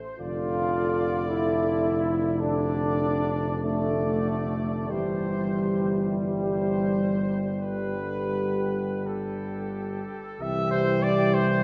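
Bathed in a wet cathedral reverb from a church or concert hall, this tender, hymn-like classical excerpt for brass band moves at a rubato 40-55 BPM in C major, with a clear trumpet section carrying the melody over a dark, distant French horn second line, a bright, close-miked trombone section with soft attacks, a roomy euphonium in the background and an up-front tuba with a smooth top anchoring the bass, every part sung with light vibrato as the harmony moves from Dm/F through C/G and G to C at 10.4 seconds.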